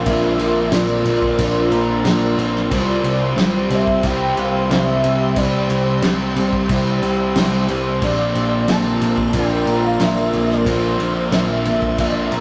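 A rough, tube-saturated rehearsal-room recording with wet ambience frames this wistful, hazy shoegaze and dream pop rock passage at 91 BPM, where a round, horn-like synth lead with chorus, phaser and vibrato sings over a pure, detuned organ-like pad bathed in ensemble chorus and reverb, a very quiet, slightly broken-up guitar picks arpeggios, crunchy overdriven and thick fuzz guitars play riffs in the background, a bright, growly picked bass holds the low end, and a loose indie kit with a fat snare, tight kick and rolled-off top enters at 0.1 s, as the harmony moves from Bbadd9 to C and back to Bbadd9 at 8.0 s.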